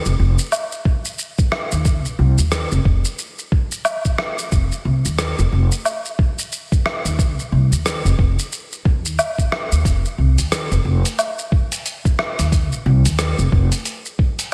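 A swung 16th-note groove at 90 BPM in 4/4 drives this warm, hypnotic organic downtempo section of a longer piece, where a gritty, compressed soul sampler-style kit of hi-hat, rim click, shaker and woodblock sits up front in a large room, a thumpy electronic kick joins at 0.9 seconds, and a woody, dark pizzicato upright bass with sidechain pumping holds the low end, all under light reverb.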